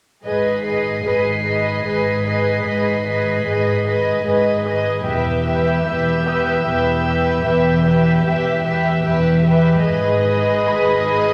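Ominous and mysterious, this suspense film score cue in G# harmonic minor moves at 75 BPM in 3/4, with a dark sul tasto violin section carrying a narrow melody over an up-front, floating second violin line, close cello and woody double bass sections, and a rich high violin texture, all bowed in a scoring-stage reverb. A ringing thumb-plucked Celtic harp enters in the background at 1.1 seconds, and the harmony later shifts from G#m to Em at 5.1 seconds and back at 9.9 seconds.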